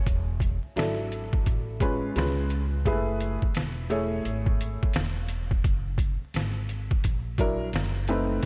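A compressed, sampler-style trip hop drum kit sits up front in this short cut from a longer jazz-hop piece, its pitched-down, muffled sound carrying a gritty vintage 12-bit edge, with a thumpy kick, a medium-tuned snare and hi-hat arriving at 0.1 s. Alongside it, a worn, slightly detuned upright piano plays accompaniment, also up front, with a natural, woody character. An acoustic upright bass, plucked pizzicato on gut strings, adds a dark, thumpy low end. The harmony moves through jazzy extended chords such as E9sus4, F#m11 and F#9 before reaching B7b9/F#, all over a relaxed swung groove in 4/4. Light reverb, a small-room ambience and a layer of vinyl crackle give the hip hop mood a cool, smoky haze.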